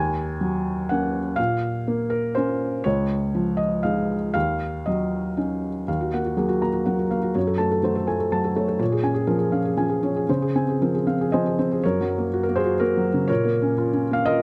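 A 3/4 pulse at 122 BPM moves with a rubato feel, giving this short neoclassical minimalist piano passage an unhurried, breathing quality. A felt-muted upright piano plays alone for the full 14.4 seconds, its soft, mellow tone sitting up front and close, ranging from Db2 up to Bb5. Set in Eb dorian, the harmony opens on Ebm7 and drifts through Bbm and Dbadd9, shifts at 5.9 seconds to colors such as Ebmadd9, Gbmadd9 and Dbmaj7, and settles from 11.8 seconds onto Gb and Bbm before the cut. The mood is intimate and wistful, lent a quiet tenderness by the muted felt. Close, detailed microphones catch the instrument's character, with just a light touch of reverb around it.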